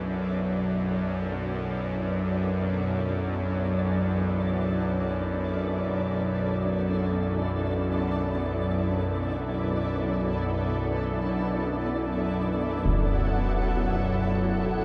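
Cavernous and desolate, this dark ambient drone hovers in free time, a fragment cut from a longer piece. Up front sits a low, string-like drone with a tense, detuned sawtooth edge, a noise layer and vibrato. Above it, a granular cloud pad holds blurred, evolving sustained chords that fade in slowly. A grainy, flickering texture, set in the background, glimmers higher up as it also fades in. At 12.8 seconds an acoustic concert bass drum lands once, up front and muffled by a low-pass filter. The whole is bathed in a soaking cathedral reverb with long, lingering tails.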